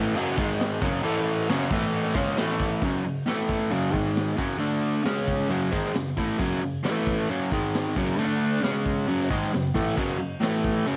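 An up-front, double-tracked overdriven electric guitar drives a menacing, swaggering garage rock riff in F# minor at 134 BPM, its compressed, picked power chords shifting from F#5 through A5, D5 and C#5, while a gritty, saturated breakbeat drum kit with a punchy kick, dark cymbals and a rolled-off top enters at 0.2 seconds, all set in light reverb in this short cut from a longer piece.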